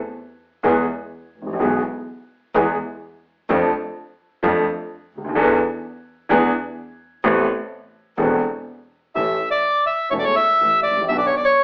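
A natural-toned baby grand piano with long sustain and a clear, bowed double bass with vibrato open this passionate, elegant tango excerpt at 126 BPM in a rubato 4/4 in A harmonic minor, moving from E through Dm/F and E7 to Amadd9 before a reedy, dark bandoneon takes a smooth melody up front at 9.2 s, with wet studio reverb and an AM radio sound placing the performance further back in the room.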